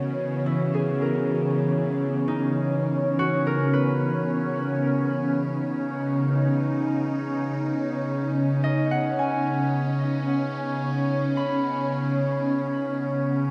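Opening on a bright, morphing wavetable pad with ensemble chorus holding a C#m9 chord up front, ringing concert harp arpeggios drifting through diffuse delay until 12.7 s, and a reedy, nasal hand-pumped harmonium drone fading in from the background, this serene, reflective ambient fragment in C# dorian floats in free time within a vast, echoing cathedral reverb.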